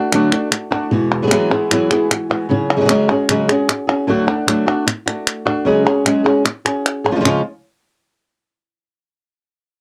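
A dark, fingerpicked flamenco guitar carries the melody up front with a cassette-tape tint, alongside a second flamenco guitar adding warm fingerpicked stabs with audible finger squeak and crisp, close palmas hand claps, in an intense, passionate 152 BPM excerpt of a longer piece moving through D, Eadd9 and C#sus4 chords in a booth before settling on C# at 7.2 seconds.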